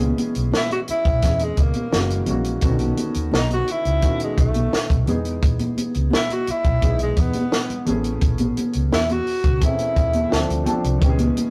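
A compact cocktail drum kit, dry and up front with a punchy kick and a high-tuned snare, opens this lush 1970s-style soul fragment alongside congas, a dark foam-muted electric bass and an intimate concert grand piano. The congas ring with a high tuning and soft hands, while the round, amped bass sits low beneath the piano, whose deep bass and audible action noise give it a natural, close presence. At 0.6 seconds a breathy tenor saxophone takes the solo melody, close-miked and up front, playing in a jazz style with vibrato and a subtone. The harmony drifts from C#m7 through F#9 and B9 to Emaj7 and Amaj9, touching Dm7 near the close, for a cinematic, silky mood. The sound is that of a rough rehearsal room, coloured by tube saturation and a moderate studio reverb.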